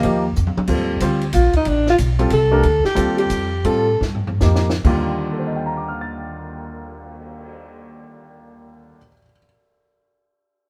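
Hypnotic and open, this short modal jazz passage in Eb lydian moves in a swung 3/4 at 130 to 186 BPM, cut from a longer piece and played live by a quartet in one room with light reverb. A dark tenor saxophone with a subtone and scooped notes takes a solo over Dm from 0.7 seconds, and its roomy, jazz-style voice sits up front in the mix. A clear grand piano accompanies with an intimate feel, its action noise audible. A woody upright bass, plucked pizzicato on steel strings, anchors the low end. A compact cocktail drum kit, dry and acoustic with dark cymbals, a high-tuned snare and a punchy kick, uses snare, toms, hi-hat, ride, crash and cymbal swell, and plays fills at 0.4 and 4.0 seconds. The band slows down from 2.6 seconds, and at 4.9 seconds the harmony settles onto Ebmaj9.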